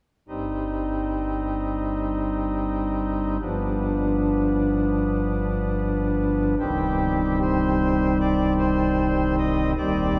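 A long cathedral reverb of about 5.5 seconds surrounds a nasal cornet stop on pipe organ, heard up front with tremulant and a romantic voicing. This short excerpt of a grave, solemn chorale in C minor moves at 76 BPM in a straight 4/4, spanning C1 to Eb5. It shifts from Cm/G to G7 and settles on C minor at 6.6 seconds, playing until 10.2 seconds.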